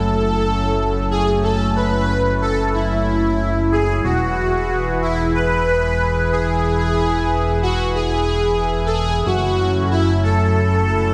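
A soft, airy supersaw melody with a cassette-tape tint and delay leads this nocturnal, nostalgic synthwave excerpt at 92 BPM in F# minor, floating over a smooth analog pad with slow-attack chorused chords and a glossy, detuned chorused synth bass with a plucky filter edge, all moving from F#m7 to E and back by 9.3 seconds inside a bright 1980s-style digital production with a moderate plate reverb.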